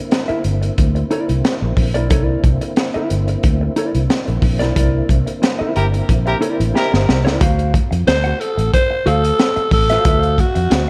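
Funk with a strutting, funky mood, built on a crunchy, punchy breakbeat drum kit with a high-tuned snare and a round, foam-muted fingered bass, while a mellow, clean electric guitar accompanies and a lightly overdriven tonewheel organ holds sustained chords through a slow rotary speaker with key click until 7.4 seconds; a clear horn section adds a brief tape-echoed line during a band accent and drum fill, and a raspy, breathy alto saxophone takes the melody at 8.1 seconds with growling, scooped notes, all set in a dark, small-room production with light reverb.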